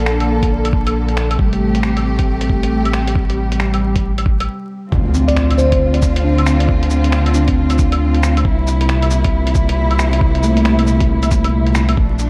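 A dreamy, reverb-soaked mix with vinyl crackle sets a rainy, ghostly future garage mood at 136 BPM in D minor, with swung sixteenths, in this cut from a longer piece. Lush bowed strings with vibrato, a mellow tine electric piano through built-in speakers and a round, deep sine sub bass all pump against a thumpy, muffled kick, while a compressed sampler-style kit of cabasa, claves, finger snaps and hi-hat adds a small-room, lo-fi texture. After a stop at 4.5 seconds, a very quiet electronic impact lands at 4.9 seconds as the harmony shifts to Dm7, and a sparkling, bell-like FM electric piano with chorus and a diffuse ambient delay offers a brief warbling melody at 5.3 seconds.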